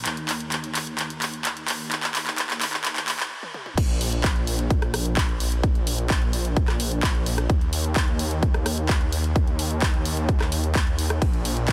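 Festival progressive house at 129 BPM in a straight 4/4, this cut from a longer piece feels anthemic and euphoric. It opens on a build-up, with a detuned saw bass sitting between Bb1 and Eb2, its thick, chorused, saturated tone pumping against the sidechain and sustaining from a fast attack. A big-room dance kit of crash and ride cymbals, handclaps, hi-hat, rim click and toms joins at 0.1 s, playing fills through the build before a brief stop at 3.3 s. The drop lands at 3.8 s, where a punchy, layered electronic kick drum enters up front, louder than the other parts. The sound carries light reverb and a dense, heavily limited modern master with a high-pass filter.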